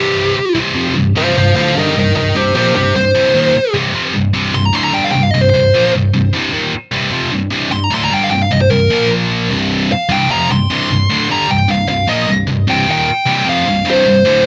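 Metal in C minor at 151 BPM in a straight 4/4, this short excerpt from a longer piece feels aggressive and relentless from start to finish. A high-gain lead guitar carries the melody as a solo across the full 14.5 seconds, its dark, distorted, picked tone ranging from G4 up to C6. Beneath it, a scooped high-gain rhythm guitar drives the riff from C2 to Bb3, sounding bright, distorted and double-tracked. Both guitars sit up front at equal level, over a harmony that moves from C5 to Bb5 at 8.9 seconds and back to C5 at 9.5 seconds. Light reverb surrounds the parts, and the whole has the rough feel of a home demo mix.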